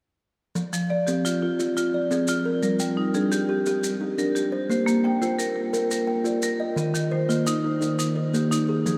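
Southern African traditional music in an mbira-style interlocking cycle, this short cut from a longer piece has a hypnotic, trance-like pull in a straight 12/8 as the harmony moves from Fm through Gm and Bb to Eb. Up front, a kalimba rings with a woody, hollow-box thumb pluck, its arpeggios joined at 0.7 seconds by a dark, percussive marimba struck with medium hard mallets, the pair sharing one range. Softer, grainy maracas fill in the texture, and a cathedral reverb gives the whole a vast, echoing space.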